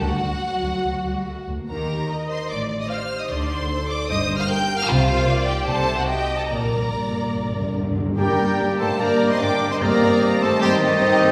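Restless and stormy, this fast, rubato romantic orchestral movement in G minor at 148 BPM carries a lush, vibrato-rich high violin melody over a soft-edged second violin line, expressive violas with portamento, dark cellos, double basses, ringing fingerpicked harp arpeggios and close, dry calf-headed timpani that play a fill from 6.5 seconds, before an airy flute, oboe, very quiet clarinet, a close bassoon, bright trombone and mellow horn chords and distant trumpet stabs join at 8.2 seconds, set in a wet recital-hall reverb.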